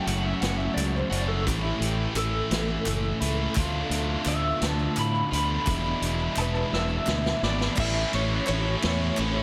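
A picked electric guitar through a small old amp carries the melody from the start, slightly broken-up, lo-fi and compressed, with tremolo and slapback echo giving its solo a wistful, carefree lilt in this indie rock excerpt. Beneath it, a double-tracked, overdriven electric guitar plays an up-front riff, joined by a growly, bright fingered bass and a vintage drum kit with dark cymbals, a tight kick and a rolled-off top. The tempo is a slow 57 BPM in a straight 6/8, in A major. Chords move from F#m7 through Dm6 and E7sus4 before settling on A at 7.8 seconds, just after a drum fill. A very quiet string machine of violas holds sawtooth chords with a slow attack and ensemble chorus, while crisp, dry group handclaps sit low in the mix. A bell-like tine electric piano with phaser and slapback echo adds a second line in the background from 6.4 seconds, all within a lush hall reverb that gives the track a big arena sound.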